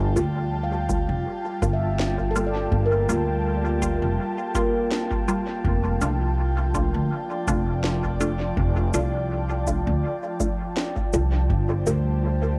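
A pizzicato upright bass sits up front in this deep, meditative ambient dub excerpt, its woody steel-string tone anchoring the whole passage in a gently swung 4/4. Around it, a soft, breathy pad holds sustained chords with a slow attack and chorus, while muted, resonant dub chord stabs pluck through phaser and dub echo. An overdriven electronic kick gives a deep pulse, and an electronic shaker and woody snare, re-recorded in a large room, drift back through their own dub echo. A ringing handpan plays bright arpeggios with sharp finger strokes through analog delay, falling away at 5.8 seconds as the harmony moves from Gm7 to F6. At 11.5 seconds, as Gm7 returns, a bubbling, stepped-filter sawtooth texture surfaces faintly in the background, and the cassette-taped home recording keeps a light reverb and digital ambience throughout.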